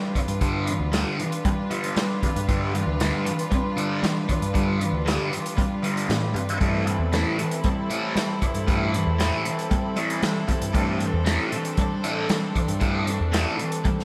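Bowed chamber strings holding rich, biting chords and a round, dark picked electric bass open this hypnotic, kaleidoscopic psychedelic rock excerpt, joined almost at once by a double-tracked fuzz guitar riff with phaser and an up-front vintage acoustic kit of tight kick, snare and hi-hat, set in a dreamy, reverb-soaked hall mix as the harmony shifts from G7 to Am7 at 6.6 seconds.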